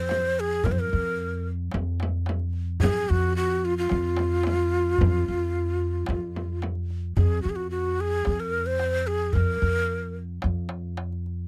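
Soulful and melancholic, this short excerpt from a longer piece is an Arabic maqam ensemble in F maqam kurd, moving at 110 BPM in a straight 4/4. A breathy, end-blown reed-cane ney carries the melody between F4 and C5, its tongued, vibrato-laden tone close-miked and slightly unsteady, sitting up front until 10.2 seconds. Beneath it, a pizzicato upright bass on gut strings holds F2 with a woody, thumpy, dark weight, also placed up front and sounding through to the end at 11.5 seconds. A large, deep metal-shell darbuka played with soft hands adds crisp, close and dry strokes, while a warm frame drum sits lower in the mix and drops out at 6.8 seconds. The dry, close 1970s-style studio sound has little reverb, and the same section repeats from 7.2 seconds.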